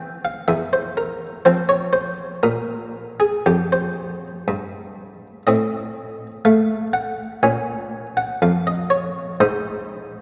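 Rubato in a slow 4/4 around 61 BPM, this flowing, introspective fragment of a baroque-style classical suite movement features a solo buff-stop harpsichord in Flemish style, its muted, lute-like plucked tone ranging from E2 to Ab5. The harmony moves from C/E through F5 to Adim7 as the key settles into Bb minor at 5.5 s, then passes through Bbm before reaching Ab. All of this is set in a lingering church reverb that places the listener further back in the room.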